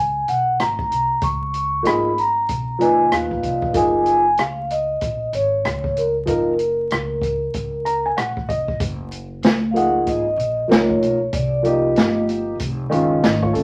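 Relaxed and warm, this jazz-hop excerpt moves at 95 BPM in 4/4 with a swung sixteenth-note feel, settled in F# major. A vibraphone played with soft mallets carries the melody from the start, its ringing, metallic tone softened by a slow motor vibrato and set up front until 12.2 seconds. Beneath it, a pizzicato upright bass with steel strings gives a woody, growly low end, while an open acoustic jazz kit with a boomy kick, medium-tuned snare, rim clicks and hi-hat enters just after the opening in a natural studio room. A dark, mellow baby grand piano joins at 1.8 seconds with a worn character and long sustain, adding a fill from 7.5 to 8.8 seconds that leads into the second section. The harmony drifts through lush extended chords such as C#9 and F#maj9 before turning to Cm7 and an altered F7 near the close, all framed by moderate studio reverb and a layer of vinyl crackle.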